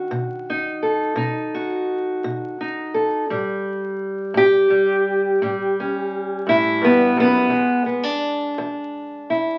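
A crackling old 78 rpm record with a dark, dulled top end and a wet studio ambience carries a laid-back, soulful acoustic country blues in a straight 12/8, where a boxy, up-front fingerpicked steel-string parlour guitar plays alone from E2 to A4 through B7, A7 and E7 in this short fragment cut from a longer piece.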